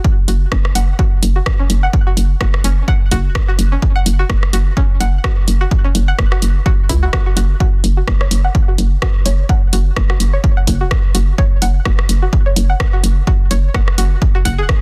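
Minimal techno at 127 BPM in 4/4 with a swung 16th feel: quirky and hypnotic, cut from a longer piece and built over a single F#5 chord. A punchy, tape-coloured electronic kick sits up front from 0.0 seconds, joined at 0.3 seconds by a hollow, bouncy FM bass with a knocking fast attack and sidechain pumping, and by a layered house kit of warm hi-hats and rim clicks with small room ambience and soft clipping on the snare. Above them a bright, twangy, string-like resonator pluck with a sawtooth and noise layer carries the riff, treated with chorus, digital delay and pumping, in a dense, heavily limited master with little reverb.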